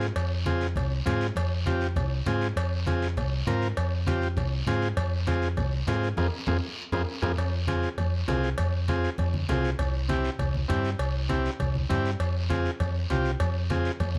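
A dark, round hollow-body picked electric bass sits up front in this fiery, danceable cumbia excerpt, joined by a buzzy, clean combo organ, a raspy guiro, ringing metal-shell cowbell and timbales, and thick-skinned, low-tuned congas in the background, with a band accent from 6.2 seconds and a drum fill from 6.5 seconds leading into a new section at 7.4 seconds, set in light reverb and captured with close, detailed microphones.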